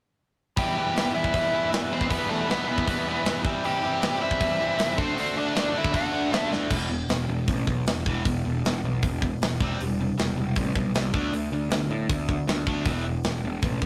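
A nasal lead guitar with a parked wah cuts through this aggressive, urgent punk rock excerpt, its overdriven, picked melody sitting up front from 0.6 seconds until just before the midpoint. Two cranked stack guitars drive the riff beneath it: one bright and forward, dropping out at 6.7 seconds, and another bright, overdriven one set further back that carries through to the end. A tight metal drum kit, with its medium-tuned snare, tight kick, crash and hi-hat, has a rolled-off top and sits close in a studio room, marking the shift with a fill at 6.5 seconds. From there a growly, fuzz-laden picked bass enters, punchy and up front, as the second half moves over power-chord changes. The whole take has the rough feel of a rehearsal room, with tube saturation and a light touch of reverb.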